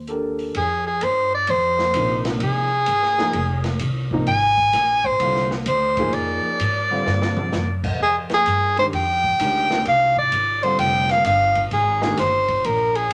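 A breathy soprano saxophone carries the melody up front, its whispered, intimate tone marked by soft attacks, scooped notes and a light vibrato. This short cut from a longer modal jazz piece sits in F dorian at 129 BPM in 4/4, with a swung eighth-note feel and a hypnotic, cool mood, and the whole thing is tuned slightly low, to A4 = 437 Hz. Beneath the horn, a pizzicato upright bass gives a woody, thumpy low end, and a warm grand piano supplies natural-sounding accompaniment, moving from a rootless Cm9 to Fm69 before dropping out at 12.2 s. An acoustic jazz kit sits low in the mix with dark cymbals, a medium-tuned snare and a boomy kick, rolled off at the top, and it breaks into a fill from 7.1 to 7.5 s. A wet club reverb with a short tail surrounds the players, giving a small-venue intimacy.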